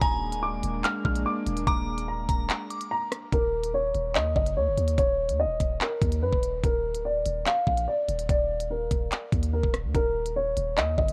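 Dry and worn, with warbling cassette-tape pitch drift, this ominous half-time drill hip hop fragment sets a dark, boxy concert grand piano melody, low-pass filtered with its action noise audible, over a deep, mellow sine 808 bass and a knocking electronic kit of crisp hi-hats, handclaps and rim clicks. A glassy FM synth bell with tape echo and a smooth, detuned sawtooth pad with chorus colour only the opening, and both drop out during a brief break, gone by 3.3 seconds.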